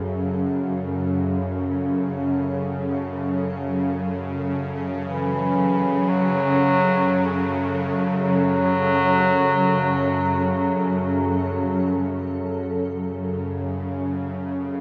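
A granular cloud pad fades in from the start, its blurred, evolving chords sitting in the background beneath a tense, string-like bowed drone that stays up front with vibrato and a bright, sawtooth edge. At 5.1 seconds a clear, vintage-toned bass clarinet enters with a solo classical-style melody, trailed by shimmer reverb and a diffuse ambient delay, and falls silent at 11.3 seconds. This dark, ominous drone in free time is steeped in a vast, echoing space with a huge reverb tail, and the pad drops away at 12.4 seconds to leave the drone alone until the cut at 14.8 seconds.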